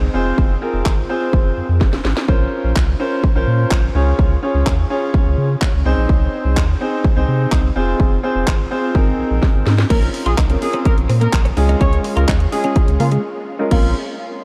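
A clear, up-front grand piano and a round, deep sub bass, both pumping with sidechain, open this driving, confident dance-pop excerpt in Bb minor at 126 BPM, joined at 0.4 seconds by a punchy house drum kit with cracking snare, handclaps, hi-hat and crash, before a smooth-topped horn section with delay and a bright, chorused twelve-string electric guitar riff, the latter set in the background, arrive at 9.9 seconds under a filter sweep, all soaked in a dreamy, huge ambient reverb, with a brief break at 13.2 seconds.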